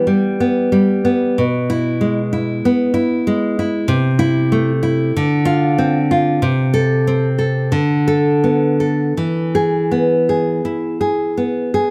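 Melancholic and passionate, this short cut from a longer romantic piece for solo classical guitar unfolds in 4/4 at a rubato 79-96 BPM, tuned slightly high to A4 = 441 Hz. The fingerpicked nylon-string guitar sits up front, spanning B2 to A4, with a warm acoustic tone and audible finger squeak caught by close, detailed microphones and light reverb. Its harmony drifts from a rootless E minor through A minor, D minor seventh and B minor seventh colours before settling on E at 9.2 seconds.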